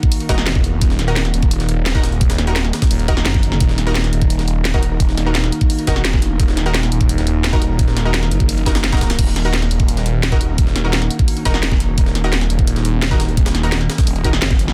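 A knocking electronic kick drum sits up front in this tense, aggressive slice of dark technical drum and bass, layered with a produced kit that brings a cracking snare, bright hats and crash cymbal, both re-recorded in a small room. Beneath them, a very quiet sampler-style breakbeat kit adds gritty, compressed hi-hat and a medium-tuned snare with the air of a large room, starting at 0.1 seconds. From 0.3 seconds a thick, swirling detuned saw bass enters up front, saturated and phased, pumping with sidechain compression while it holds low on an Eb minor foundation. In the background, an eerie metallic FM drone sustains slow-blooming chords with chorus, reverb and its own sidechain pulse, while a bold, punchy orchestra-hit-style synth stab with a noise layer and filter sweep fires short bursts through reverb and delay. The mix is dense and heavily limited, dry overall, and cut from a longer piece.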